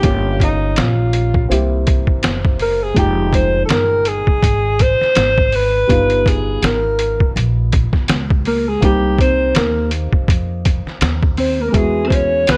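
A breathy alto saxophone with vibrato and scooped notes carries a jazz-style melody from the start, over a dark, vintage upright piano, a woody pizzicato upright bass and a muffled, pitched-down sampler-style drum kit with a thumpy kick and swung sixteenths, giving this cool, smooth jazz-hop piece its character until a clean, fingered electric guitar with spring reverb adds a second line at 8.5 s.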